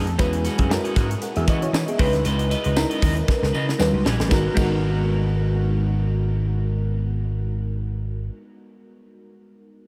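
Nocturnal and bittersweet, this polished 1980s jazz-funk pop excerpt moves at 116 BPM in G# minor with a light sixteenth-note swing, its bell-like FM electric piano sparkling through phaser and chorus over rich chords like E69, C#m9 and D#7alt. A slightly broken-up electric guitar plays a picked riff bathed in lush chorus, while an up-front vintage slap bass and a crisp, airy fusion kit with a high-tuned snare and punchy kick drive the groove alongside a very quiet, jingly tambourine. The drums and tambourine drop out at 4.7 seconds after a drum fill, leaving the piano, guitar and bass to float in a dreamy mix soaked in huge ambient reverb.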